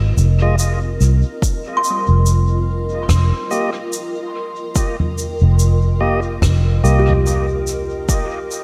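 A round, foam-muted electric bass sits up front under a dark, blurred granular pad that holds sustained chords from the start of this deep, meditative ambient dub fragment at 72 BPM with a swung 16th feel, joined by a soft-mallet kit of rim clicks, shaker and toms trailing dub echo, lightly overdriven tonewheel organ stabs with key click and a stopped rotary speaker from 0.4 s, an overdriven electronic kick from 1.4 s, and woody, hollow kalimba arpeggios through a low-pass filter and echo from 1.8 s, all moving from Fm7 to Eb/F.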